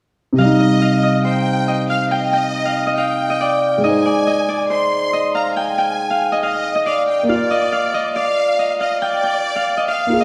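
A half-time 4/4 pulse at 139 BPM sets a dark, brooding hip hop mood in C minor, in this short cut from a longer piece that moves from Cm to Ab at 3.8 seconds and Bb at 7.3 seconds. A dark, boxy grand piano with a worn, mellow tone plays the accompaniment up front from 0.3 seconds, while a bright, ringing Celtic harp carries the fingerpicked melody with delay. Above them a lush symphonic violin section adds a smooth, bowed second line with vibrato, all set in a wet recital-hall reverb.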